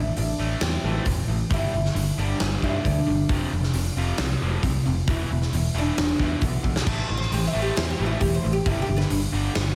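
Driving and heavy, this hard rock excerpt in A minor moves at 134 BPM in a straight 4/4, cut from a longer piece. An oud carries the melody as a solo across the whole passage, its woody, plectrum-plucked double strings given a slapback echo and analog delay. Beneath it, a double-tracked overdriven electric guitar drives a bright, picked riff with its own slapback echo, and a growly, punchy picked electric bass plays direct. A big rock drum kit enters at 0.2 seconds, sitting up front in a big room with a tight kick, medium-tuned snare, hi-hat and crash cymbal, its top end rolled off, and it plays a fill at 6.7 seconds. The chords move from Am through G5, F5 and E5 to A5 and back to G5, all under a light studio reverb.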